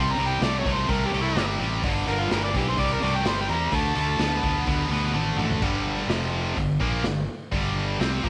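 A lightly reverberant studio ambience frames this gritty, driving cut from a longer blues rock and southern rock power trio piece in a straight four. An amplified, overdriven harmonica with tape echo opens with a jazz-style solo full of scooped notes, tongue slaps and light vibrato, over an up-front, double-tracked distorted guitar riff and a growly fuzz bass, until the harmonica stops at 4.7 s. The raw garage drum kit, saturated, with a punchy kick and a rolled-off top in a bright stone room, enters at 0.2 s and plays a fill from 5.2 s into the closing section.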